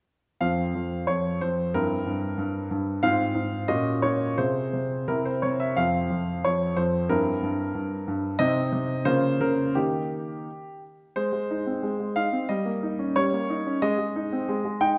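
A wet recital hall reverb, with a 1.5-second decay, surrounds this short passage cut from a longer classical-period piano sonatina. The solo grand piano sits clear and up front, spanning a range from F2 to G5. The mood is dramatic and restless, moving at roughly 85-94 BPM in 2/4 with a rubato feel. The opening section stays in F minor, leaning on F5 and C7/G chords, before the key shifts to A-flat major from 8.4 s. A new section begins at 11.2 s, where the harmony moves through Ab, Eb7/G and back to Ab.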